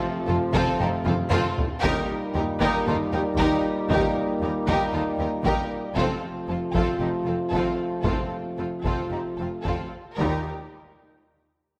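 Taiko ensemble struck with hard sticks rings out from a distant, large room, pushing this heroic, adventurous passage of epic orchestral film score at 116 BPM in Eb lydian, with a drum fill at 1.0 seconds. A lush symphonic violin section carries the melody with vibrato over a close studio violin second line, an expressive viola accompaniment with portamento, and rich cello and double bass holding the bass. Mellow French horns and clear trombones sustain chords in the background from 0.0 seconds as the harmony moves between F and Eb, all within a moderate scoring-stage reverb.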